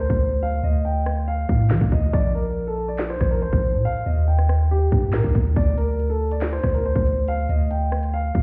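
Heard muffled as if through a wall, with stone-room reverb and vinyl crackle, this tense, menacing half-time drill fragment at 140 BPM in D phrygian sets a dark, boxy concert grand piano melody with tape echo and lingering sustain over a deep, sine-toned 808-style bass with a fast attack and a long decay, while an up-front electronic kit of hard-clipped kick, sharp snare, warm hi-hat, handclaps and rim clicks enters at 0.1 seconds as the harmony moves from Dm through Bbsus2 and Eb to D7(no3).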